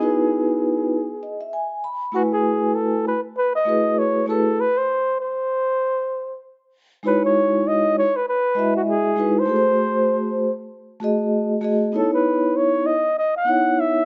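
A breathy flugelhorn and a soft-mallet vibraphone open this short hip hop excerpt together, setting a nocturnal, smoky mood over a swung sixteenth-note feel. The flugelhorn carries the melody as an up-front jazz-style solo, its dark, whispered tone shaped by vibrato, soft attacks, scooped notes and a smooth top. Alongside it, the vibraphone plays mellow, ringing accompaniment with a medium motor vibrato, and it adds a fill from 0.9 to 2.1 seconds. After a break from 4.6 to 7.0 seconds, the harmony moves through lush extended chords, landing on C#m9 near the close. The recording sits in a moderate echo-chamber reverb with small-room ambience, and its rolled-off highs give the whole an intimate, late-night haze.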